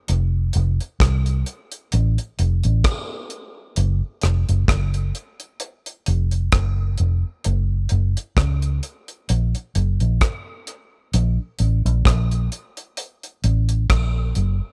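A vintage muted electric bass anchors this dub reggae excerpt, its dark, round, foam-muted tone sitting up front and amped as it moves between F1 and Db2. Alongside it, a deep reggae drum kit plays hi-hat, kick drum and rim click, with a tight kick and a dry, acoustic sound that also sits close to the listener. Both parts play together from 0.1 to 14.6 seconds, at a slow 65 BPM in 4/4 with a light swing on the sixteenths. The mood is meditative and spacious, and the room adds little reverb, so the sparse arrangement feels intimate and direct. The bass stands a little louder than the drums throughout this single section cut from a longer piece.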